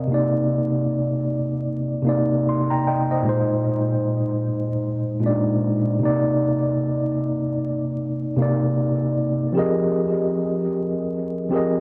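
Reflective and hazy, this short hip hop fragment cut from a longer piece features a solo electric piano, mellow and clean with a built-in-speaker tone, sitting up front with cassette tape coloring and tape echo as it moves with a swung feel through Cm9, Bb9sus4 and Fm11 chords, all set in a damp, close booth ambience with the vinyl crackle of a home cassette recording.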